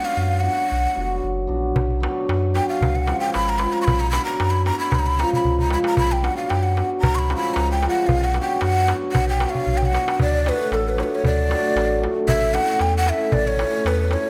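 A swung 2/4 pulse at 114 BPM drives this fiery, restless Balkan wedding-band piece, where an up-front, breathy ney with vibrato and slapback echo carries the melody over shimmering hammered cimbalom, a deep, clean sine sub bass and a crisp metal-shelled darbuka that enters at 1.8 s and fills at 9.5 s before the key moves from B Hungarian minor to D major at 10.2 s, within a recital hall's moderate reverb.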